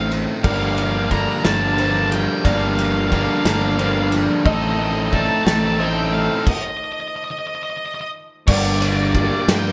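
Post-rock in G minor at 60 BPM in a slow 6/8, this melancholic, cinematic fragment of a longer piece builds over a Gm7 to Adim progression, with a dark octave-fuzz lead guitar carrying the melody above a cranked stack guitar riff, an overdriven semi-hollow guitar riff that drops out at 6.5 seconds, and a round, punchy fuzz bass. Beneath them, a background electric guitar through a small old amp and a very quiet felt-muted upright piano with audible action noise play arpeggios, while a deep, evolving ambient pad holds sustained chords. A loose indie drum kit with a pumping room sound and a tight kick drives the build-up, and the whole band sounds as if playing live in one stone room with moderate reverb.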